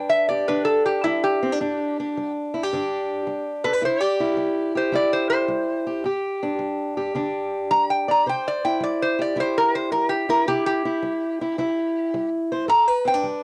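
A loping swing in 4/4 carries this short fragment of acoustic country blues, soulful and laid-back in mood. Up front, a metal-body resonator guitar takes the melody from the start, played with fingerpicks and a steel bar, its tone metallic and nasal as the slide carries a solo through to about 13.4 seconds. Alongside it, also up front, a fingerpicked steel-string parlour guitar supplies the accompaniment, its boxy, cassette-tinged sound marked by audible finger squeak. The harmony stays simple, shifting between G and C. Light reverb and the home-recorded cassette sound give the duo an intimate, unpolished character.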